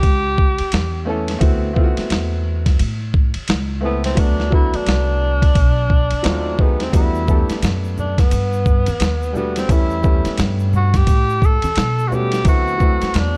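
A breathy, mellow tenor saxophone with vibrato sings a jazz-style lead from the start over clear, smooth upright piano, a woody pizzicato upright bass, and a gritty, compressed sampler-style drum kit with a thumpy kick sitting up front, setting a cool, nocturnal jazz-hop groove with a lazy swing. At 6.9 s a bright, close tube shaker and congas slip in quietly in the background as the chords move through rich extended harmonies like A9, D13 and Em11. The small room and dark, warm production give this short cut from a longer piece a late-night feel.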